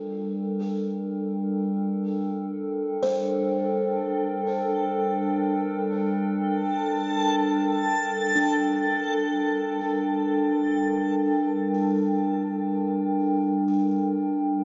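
Steeped in a dark, cathedral-like reverb, this melancholic and spacious ambient fragment rests on an up-front, warbling tape-like pad of sustained chords with chorus, while a soft, buzzing kalimba plays woody arpeggios through a diffuse delay, and a reversed, detuned granular texture swells dreamily from 3.7 to 10.8 seconds.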